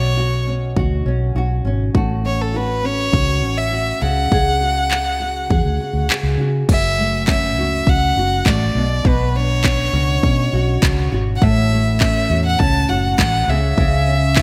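Bright, 1980s-style digital production with light small-room reverb frames this wistful, reflective acoustic pop piece in F# minor, moving at 101 BPM in a straight 4/4 as chords such as Bmadd9, F#m7 and C#sus4 pass by. A close, up-front violin carries a smooth, even bowed melody with vibrato over a double-tracked, fingerpicked nylon-string guitar and a round, foam-muted vintage electric bass with a dark, amped edge. A layered electronic house drum kit with a punchy kick, handclaps, crash cymbal and gated reverb enters at 0.8 seconds, and a very quiet, crisp group handclap joins at 7.3 seconds as the passage moves into its second section.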